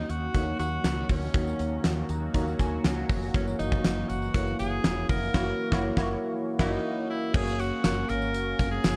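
A straight 4/4 pulse at 120 BPM drives this romantic, glossy 1980s-style pop excerpt, where a gated drum kit with a fat snare and gritty sampler edge backs a bright, vibrato-laden tenor saxophone melody, a worn, slightly out-of-tune tine electric piano with analog chorus and a fill from 1.8 to 3.3 seconds, a round, woody fretless bass, a sweeping sawtooth pad with phaser in the background, a jingly tambourine, and a breathy, whispered soprano saxophone second line entering at 5.3 seconds during a band accent, all over D#m7 and F#7 before settling on F# in a light small-room ambience with cassette-tape color.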